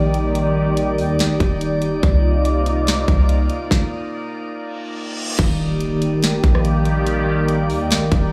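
Atmospheric cloud-rap hip hop with a blissful, dreamy half-time feel, cut from a longer piece, built on an up-front sweeping pad of detuned sawtooth tones with chorus and a resonant filter swell, over a deep, round 808-style bass and a calm, glassy harmonics texture whose overtones drift in chorus and its own reverb. The produced trap kit sits up front with a hard-clipped kick, sharp snare and bright hats, re-recorded in a small room. A stop arrives at 3.7 seconds, a reverse cymbal enters in the background at 4.7 seconds, and an electronic impact lands at 5.4 seconds as the next section begins.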